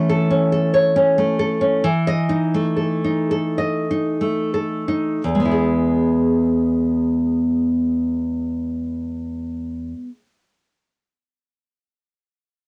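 A home recording on cassette puts the guitar up front in a booth, with a moderate, short ambience around it. The piece is a romantic work for solo classical guitar in triple metre, played with a free, rubato feel that sounds nostalgic and sunny. The nylon-string guitar is fingerpicked, and its fresh strings give a bright acoustic tone across a range from E2 to D#5. The opening phrase slows down through its first 5.2 seconds as the harmony moves from A over E to Esus4, and then a second passage settles onto a plain E chord. The recording is cut from a longer piece and ends at about 10.2 seconds.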